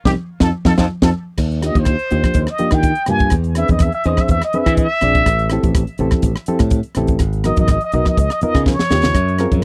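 A band accent opens this soaring, slick electric jazz fusion excerpt at 124 BPM in a lightly swung 4/4, as a brilliant, forceful plunger-muted trumpet solos with wah-wah and light vibrato over reedy electric piano with fast tremolo, growly fingered bass, a punchy, high-tuned fusion drum kit with fills at 0.4 and 8.7 seconds, and soft-handed congas in the background, through chords moving from F7(no3) to Ebmaj9, E7b13, Am7, Abm9 and Db13 in a dry, close 1970s-style studio sound.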